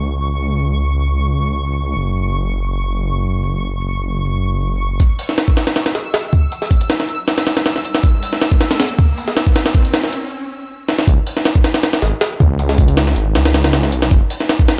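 A compressed, pitched-up jungle sampler-style drum kit sits up front in this dark, raw drum and bass excerpt, its thumpy kick and high-tuned snare carrying the sound of a large room as it arrives at 5.0 seconds for a build-up that ends in a drum fill before the drop at 11.1 seconds. A thick, menacing detuned saw bass, saturated and beating, opens the piece and returns for the drop. A twinkling granular texture with an octave-up shimmer and built-in reverb hovers high above until a brief stop at 10.3 seconds, joined at 6.6 seconds by an electronic riser in the background, all captured in a dry hardware recording with vinyl crackle and a gritty edge.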